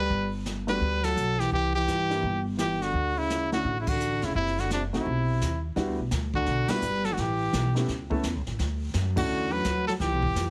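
Heavily compressed, radio-like sound with light reverb frames this short, playful and sophisticated small-group swing and bop excerpt at 170 BPM in D major, where a bright, up-front trumpet with vibrato and plate reverb carries the melody over a raspy, growling trombone second line with scooped notes, a woody, thumpy pizzicato upright bass, and a distant, roomy brush kit with dark cymbals and a boomy kick, joined at 0.7 seconds by a natural-sounding baby grand piano with short sustain, as band accents punctuate the swing from 1.0 seconds onward.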